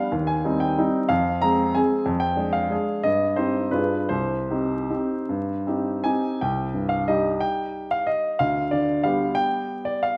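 Vinyl crackle and a wet recital-hall reverb frame this short cut from a longer piece, with a clear, polished baby grand piano sitting up front as the sole voice from 0.0 to 10.2 s. It is a wistful, bittersweet classical waltz in C minor and 3/4, played with rubato at a tempo that moves between 146 and 198 BPM, spanning C2 to Bb5. The opening phrase passes through Fm, a diminished chord and a tense G7b9 before settling on Cm, and a new section begins at 6.4 s, leaning toward G7 near its close.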